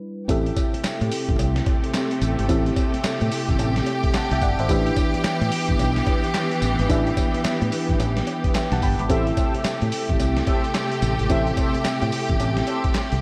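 Opening on a mellow, warbling FM electric piano with chorus, this punchy, slick new jack swing cut in A minor at 109 BPM swings over Am7 and G6 as woody, lush bowed strings, a round fingered bass, a gritty, pitched-down boom bap kit with handclaps and tambourine, and a very quiet metallic cowbell join at 0.3 seconds, all bathed in a dreamy hall reverb, before sawtooth synth brass stabs with chorus and analog delay slip in behind at 9.1 seconds.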